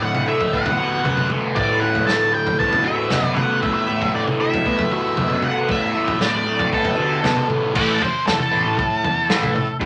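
A crunchy breakbeat drum kit drives a straight 4/4 groove at 116 BPM, its saturated, gritty sound carrying dusky cymbals, a tight kick, a medium-tuned snare, toms and crash in this short cut from a hypnotic, dark psychedelic rock piece. Up front, a double-tracked fuzz guitar plays a phaser-coloured riff over Bm7 while a picked octave-fuzz lead guitar with wah carries the melody, and a warm, overdriven picked bass sits in the background. At 7.7 seconds the harmony shifts to A5 and the lead breaks into a solo, all set in a brief, wet studio ambience.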